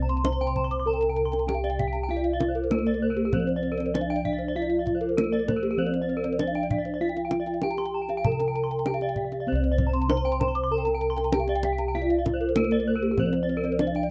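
A dark, smooth bronze metallophone carries the melody in this brief cut from a longer Balinese gamelan piece, struck with padded disc mallets and tuned in pairs so its notes shimmer with beating. The mood is shimmering and brilliant, moving at a steady 97 BPM in straight 4/4 in C slendro. Two more metallophones weave arpeggios above it: one is bright and airy under a horn mallet, while the other, played with padded mallets, sounds close-miked, dry and full. Down low, a set of bossed gongs holds the bass with a round, beating tone that sits up front. A deep kendang, played with hard hands and heard close, joins at 0.2 s, and the opening passage returns at 9.5 s in a room with little reverb.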